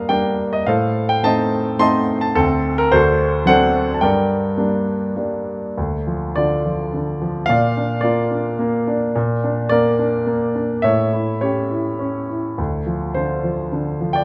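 In a lilting triple metre, the beats stretch and give with free rubato, so the pulse breathes rather than ticks. This is a lyrical classical piece for solo grand piano, bittersweet and moody in character, cut from a longer work. The piano sounds present and polished, sitting up front with a short sustain, and its lines span from the low bass to the upper treble. Dark minor harmonies and a diminished chord colour the opening, and at 5.8 s the music moves into a new section with a changed tonal centre, ending on a minor seventh chord. A moderate recital-hall reverb surrounds the instrument, lending the performance a sense of space that lasts through to 14.2 s.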